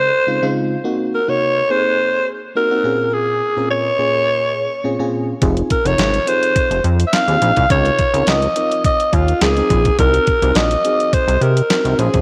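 A straight 4/4 groove at 105 BPM drives this danceable, funky early-eighties boogie funk excerpt, cut from a longer piece, where a breathy, raspy alto saxophone with vibrato and tape echo carries the melody from the start over a glassy, bell-like FM electric piano with chorus, moving through chords such as Dbmaj9, Cm7b5 and Bbm7. At 5.4 seconds a glossy, chorused synth bass with a filter pluck and a detuned 8-bit digital drum machine come in up front, the drums bringing a thumpy kick, medium-tuned snare, hi-hat and handclaps. Light reverb and digital ambience give the mix its sheen.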